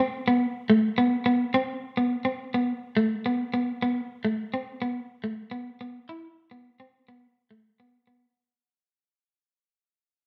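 A straight 4/4 pulse carries this danceable highlife fragment, cut from a longer piece and fading out across its full 8.4 seconds. A lone picked electric guitar plays accompaniment in its middle register, sitting up front with a slightly broken-up edge and a touch of spring reverb. The band's live, single-room recording adds a moderate studio ambience, and the tuning sits a little below standard pitch, giving the short passage a warm character.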